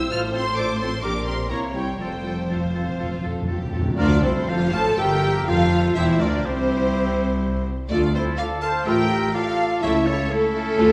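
A dark, woody violin section carries the melody in this fast, dramatic romantic movement for symphony orchestra, a short excerpt in F major at 124 BPM with a rubato feel that still sounds lively and cheerful. Beneath it, a second violin section and the violas add rich, lush bowed lines with vibrato, while cellos and double basses anchor the bass, the basses sounding especially expressive. A mellow French horn section holds sustained chords in the background, and woodwinds weave second lines: an airy, very quiet flute, a clear solo oboe, and a dark, soft-edged clarinet that drops out at 3.8 seconds. Timpani with medium mallets add a fill from 2.0 to 4.0 seconds, and as the music moves into its second section at 4.0 seconds a distant, roomy trumpet section enters with dark stabs. The harmony turns from F major toward D minor and an A major chord near the close, all set in a moderate concert hall reverb.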